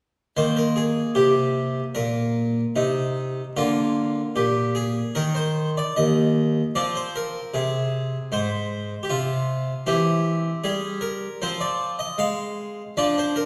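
A wet recital-hall reverb surrounds this short passage, with the listener placed further back in the room. It is a solo harpsichord piece in a baroque-style suite movement, flowing and dance-like, set in four with a supple rubato that lets the pulse breathe. The harpsichord, a Flemish-style instrument with two sets of strings, sits up front with an airy, plucked, full tone, ranging from deep bass notes up into its treble. Playing from 0.4 to 13.5 seconds, it moves from a bright opening harmony through a brief unharmonised moment at 5.1 seconds before settling into darker minor chords. The passage is cut from a longer piece.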